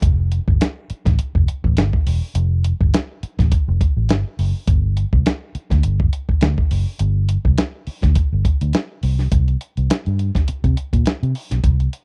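A lightly swung sixteenth-note groove drives this playful, gritty funk excerpt cut from a longer piece, carried by a dusty, sampler-style drum kit with a thumpy kick, medium-tuned snare and hi-hat, compressed and tape-warm with the air of a large room behind it. Up front beside it, a vintage muted fingered electric bass sounds dark, round and foam-damped through its amp, ranging from E1 to C3. The dry, close recording has a 1970s studio character, and the groove moves into a new section at 9.3 seconds.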